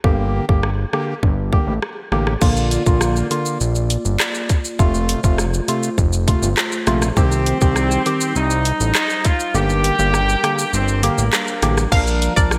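Tough and bouncy, this dancehall excerpt at 101 BPM rides a tight, up-front electronic kit of kick, rim click, hi-hat, shaker, handclaps and crash cymbal with gated reverb, a fat, detuned sawtooth analog bass with a filter sweep, and hollow, percussive organ stabs with chorus over a Gm, Bb, F, Cm progression. A glassy, ethereal glass harmonica holds pumping chords in the background from 2.4 s, and a vintage jazz-style horn section with light vibrato and delay adds a second line from 7.2 s while the kick falls silent for a stretch. A round, detuned analog pluck with chorus and delay slips in a brief melody at 11.9 s, all within a bright 1980s-style digital production and a lush hall reverb.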